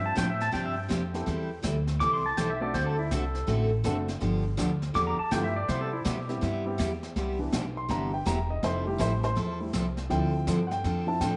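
A clean, fingerpicked pedal steel guitar leads this swinging, playful western swing excerpt in C major at 163 BPM, sliding through volume swells before it drops out at 6.4 seconds and an intimate upright piano, its action noise audible, takes the solo from 7.2 seconds. Beneath them a thumpy, woody pizzicato upright bass and a bright, full-bodied picked dreadnought acoustic guitar carry the changes from F through Am9, D7 and G13. A brushed jazz kit with a high-tuned snare and punchy kick keeps the swing, all bathed in a wet spring reverb.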